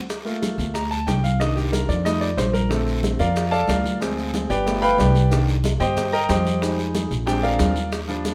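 A straight 4/4 salsa groove of warm, compressed congas, tight high-tuned bongos and grainy maracas sits in the background with a raspy, close guiro, driving this danceable, passionate excerpt, while a brilliant concert grand piano with a deep low end takes an up-front solo from 0.1 s and a woody, thumpy pizzicato upright bass joins at 0.6 s, set in a moderate studio reverb.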